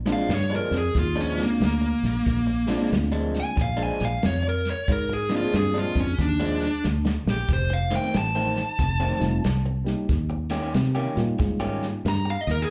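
Electric blues shuffle at 92 BPM in Bb mixolydian, laid-back and swaggering, where a dark, overdriven lead guitar solos up front through plate reverb and slapback echo across the whole excerpt, over a round fingered bass, a slightly broken-up rhythm guitar riff from a small old amp with its own slapback, a reedy electric piano in the background, and a distant, roomy soul drum kit with a rolled-off top that plays a fill at 6.8 seconds as the chords move from Bb7 to F7 and then Eb7, all heard through a club PA with light reverb.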